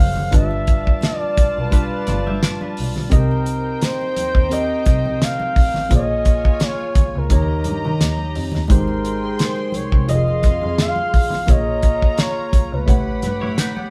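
Romantic and warm, this lush 1970s-style soul excerpt moves at 86 BPM with a gentle sixteenth-note swing, as a dark, breathy flugelhorn carries the melody over a bowed string section with a reedy, gut-string tone and a worn, slightly out-of-tune tine electric piano. A clear, bowed double bass and a damped, up-front drum kit with a fat snare and tight kick anchor the groove, while very quiet congas add soft-handed color and a bright, picked semi-hollow guitar slips in a brief riff at 1.7 seconds. A very quiet vibraphone adds a metallic, ringing texture from 9.1 seconds, all set in a moderate room reverb as the band plays live through chords drifting from G7 toward Abmaj7 and closing on A13.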